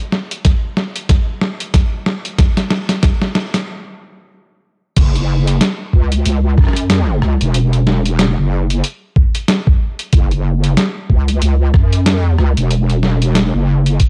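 Dry and gritty, with a cassette-tape grain over a digital ambience, this funky glitch hop cut from a longer piece moves at 93 BPM in 4/4 with a swung 16th-note feel. It opens on a build-up where a pitched-down, sampler-style boom bap kit of crash cymbal, hi-hat, rim click and medium-tuned snare plays a drum fill alongside a thumpy, compressed electronic kick, both set up front in a small room. At 3.7 seconds the groove stops for a brief gap. The drop lands at 5.0 seconds, when a heavy wobble bass enters, built from detuned square and sine layers in unison, resonant and saturated, with a fast attack, sustained notes, chorus and overdrive. Down in the low register between E1 and F#2, the bass sits up front beside the tape-warm drums, giving the section a gritty, weighty bounce.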